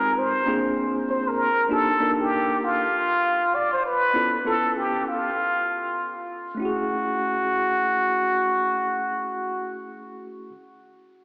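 Drenched in a long plate reverb with an AM-radio character, this dreamy, nocturnal hip hop fragment has a smoky, swung feel. An up-front, plunger-muted trumpet carries the jazz-style melody with a breathy wah-wah tone and a diffuse ambient delay, playing from the start until 9.8 seconds. Beneath it, a worn, slightly out-of-tune tine electric piano, lightly overdriven as if heard through built-in speakers, supplies mellow ninth, sus and altered chords, and the music moves into a new section at 6.6 seconds on a minor ninth.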